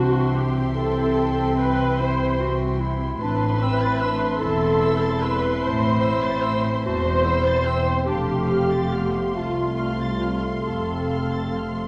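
A dark, warm orchestral recording in a moderate concert-hall reverb carries this bittersweet, sorrowful fragment of a cinematic film score, moving slowly in a rubato 6/8 at around 43-50 BPM. Con sordino violins sing a veiled, vibrato melody on a high C6 over a second violin line and an up-front, smooth-topped viola accompaniment, while a mellow, distant clarinet adds a roomy second voice. A warm French horn section holds sustained chords in the background, and muted cellos pair with soft-attack, lush double basses on the bass beneath a progression from C through Am to F.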